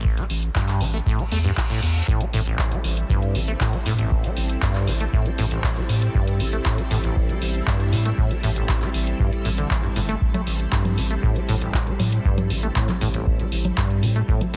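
Acid house at 118 BPM in A minor, raw and hypnotic, cut from a longer piece and resting on a single Am7 chord. A squelchy, resonant sawtooth acid bass drives the riff with a lush chorus on it, while a dry, deep electronic kick and a tape-toned analog drum machine of congas, handclaps and hi-hat, re-recorded in a small room, carry the groove. Underneath, a round, evolving bass blending square and sine tones pumps with sidechain compression. A brief reverse cymbal sweeps in at 1.3 seconds, and from 2.3 seconds a vintage string machine adds sustained, bright ensemble chords with a slow attack, chorus and the same pumping motion. The whole mix sits in light digital ambience with a heavily compressed, radio-like sound.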